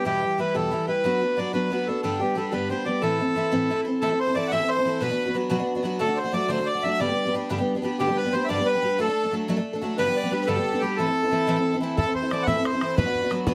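Set in a modest small-room ambience, this spirited, driving Celtic jig in 6/8 at 121 BPM in A dorian puts a reedy, close-miked accordion melody up front over a bright, shimmering picked twelve-string acoustic guitar, with a clear, boxy bowed fiddle slipping in behind as a second line at 4.0 seconds and a damped, tight bodhran joining at 12.0 seconds near the end of this cut from a longer piece.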